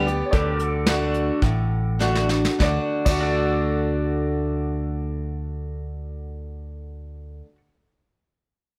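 A straight 4/4 pulse between 98 and 116 BPM slows through the opening 2.6 seconds. Brushed drums sit up front with a tight kick, and a fill from 2.0 to 2.6 seconds leads into the next phrase before the kit drops out at 3.2 seconds. This down-home, nostalgic fragment of honky-tonk and classic country in D major rests on a round, punchy fingered electric bass and a picked dreadnought acoustic guitar, both up front. A woody upright piano carries the melody in the background, while a bright, twangy pedal steel holds sustained chords with volume swells and slide, all inside a moderate large-studio reverb.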